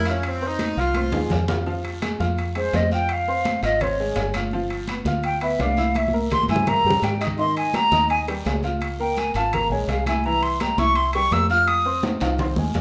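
Salsa at 168 BPM in F minor, this driving, danceable clip, cut from a longer piece, opens with a bright, close-miked horn section that plays a loose melodic figure for only the first 1.3 seconds. Underneath, a worn, woody upright piano with a slightly detuned tinge supplies the accompaniment throughout, while a deep, round, foam-muted fingered electric bass sits punchy and up front. The percussion fills out the groove: high-tuned congas played with soft hands, ringing metal-shell timbales with a compressed, saturated edge, and a raspy, band-limited guiro low in the mix. From 2.6 seconds an airy, hollow concert flute takes over as the lead, its vibrato and crisp attack close and forward as it solos up to F6 over chords moving from Fm through Dbmaj7, G7 and C7 before returning to Fm7. Drum fills mark the passage at 1.0, 6.0 and 12.0 seconds, and a moderate large studio reverb gives the whole ensemble a sense of space.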